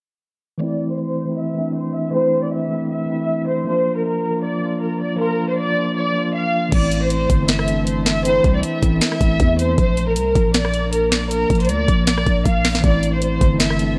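This brooding, eerie trap excerpt in A phrygian opens at 0.6 seconds with a dark, woody violin section carrying the melody through a low-pass filter and delay, over a mellow tine electric piano, as a filter sweep runs beneath them. At 6.7 seconds a half-time trap kit at 157 BPM arrives with a knocking kick, sharp snare, bright hats and crash, joined by a growling, buzzy 808-style bass. A glassy, ethereal FM pad with chorus and its own reverb slips in behind them at 7.4 seconds, all within a light room reverb.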